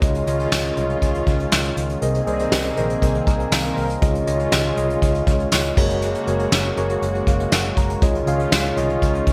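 A brush-played vintage drum kit sits up front with a punchy kick and dark cymbals, its gated reverb framing this nostalgic, romantic 1980s-style pop excerpt at 120 BPM in Db major. A mellow tine electric piano carries the accompaniment and adds short fills over a brassy analog pad with chorus and a round, foam-muted fingered electric bass, while a very quiet, jingly tambourine enters at 0.5 s. Detuned sawtooth synth brass stabs with chorus and digital delay sit in the background from 2.8 to 3.9 s during a band accent, and the mix has a moderate plate reverb and a bright digital production.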